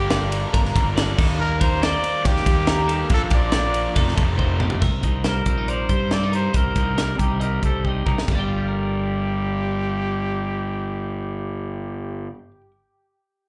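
Intricate and restless, this math rock and midwest emo fragment in G minor runs at 139 BPM, with a warm trumpet carrying the melody in a light vibrato over bright, twangy twelve-string electric guitar arpeggios. A raw, double-tracked garage guitar riff with overdrive and spring reverb stops at 4.8 seconds, where a second, clean twelve-string guitar takes up the accompaniment. Throughout, a growly fuzz bass sits up front, and a crisp fusion kit with a high-tuned snare and tight kick plays until 8.4 seconds, adding drum fills along the way, all heard as a live gig through the venue's PA with a touch of club ambience.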